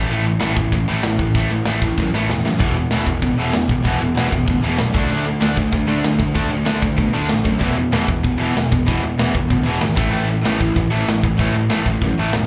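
A tight, distorted electric guitar leads this upbeat, energetic punk rock excerpt, its bright picked riff sitting up front from the opening moment through to the end at 12.5 seconds. Beneath it, a growly, fuzz-laden picked electric bass carries the low end with overdrive, while a polished acoustic metal drum kit with a tight kick, medium-tuned snare and hi-hat drives a straight 4/4 at 191 BPM. A drum fill at 2.0 seconds sets up the entry of a second, crunchy overdriven guitar at 2.6 seconds, which plays a riff further back in the mix, touched with slapback echo. The power chords move from A5 to E5, D5, back to E5 and home to A5 at 10.0 seconds. The drums have an airy, big-room quality, and the whole performance is heard as a live gig through a club PA, with a little club reverb around it, cut from a longer piece.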